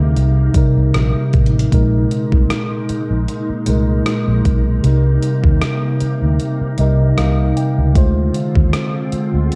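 A mellow, up-front tine electric piano carries the accompaniment in this longing, sensual contemporary R&B excerpt, with a fill from 6.4 to 8.0 seconds, over a glassy, ethereal FM pad with ensemble chorus and sidechain pumping, a dark, round, foam-muted fingered bass, and a thumpy, overdriven 12-bit drum machine of kick, hi-hat and rim click, all colored by light reverb and worn cassette tape with warbly pitch drift.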